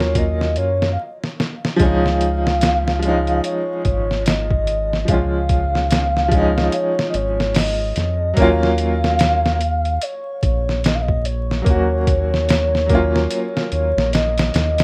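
Trip hop at 73 BPM with a swung 16th feel, brooding and melancholic, where a breathy sine lead carries the melody through lush chorus and tape echo over a bright, woody upright piano with tremolo, a round, deep analog bass and a gritty, pitched-down sampler-style drum kit, with a stop at 1.0 seconds and a drum fill at 1.2 seconds before the harmony moves from Ebm7 to Dbadd9 at 1.8 seconds, set in a small room's reverb with the vinyl crackle of a rough home demo mix.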